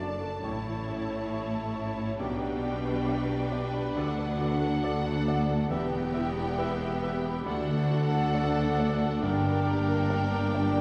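A cinematic, emotional film score for full orchestra, this short cut from a longer piece unfolds at a rubato 68 BPM in D major, sorrowful and moving in tone. A lush violin section carries the melody with warm vibrato, while a very quiet, airy, hollow flute ensemble plays a second line in the same high register, and a second violin line, a distant clarinet and a close-miked cor anglais weave soft inner voices in the background. Beneath them, a rich viola section and a smooth, vintage-toned grand piano fill out the accompaniment, French horns hold mellow sustained chords, and a concert harp adds faint, ringing fingerpicked arpeggios. Cello and double bass sections anchor the low end with rich, bowed tone. The harmony moves through A, G/B, D, Em and D before turning to a darkening G minor at 9.2 seconds, and the whole ensemble sits further back in a wet scoring-stage reverb that lends it a spacious glow.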